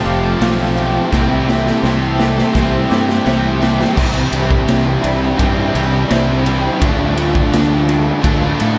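This blissful, dreamy shoegaze and dream pop excerpt opens on a very quiet, shimmering pulse-width pad holding sustained chords and a faint, woody twelve-string acoustic guitar picking octave-doubled arpeggios. Around them, three electric guitars play riffs: a slightly broken-up, lo-fi one through a small old amp with reverse reverb, an overdriven one softened by analog chorus sitting in the background, and a bright, double-tracked distorted one. A round, punchy fuzz bass with overdrive anchors the low end. At 0.4 seconds a raw garage drum kit comes in, gritty and saturated, with dark cymbals, a punchy kick and a pumping small-room sound, and it plays a fill before the pad drops out at 4.0 seconds. The tempo is a straight 84 BPM in 4/4, in C major, and the chords move from Fadd9 and C6 to Cadd9 and Dm. The whole mix is soaked in a lush hall reverb that gives it a hazy, floating sheen.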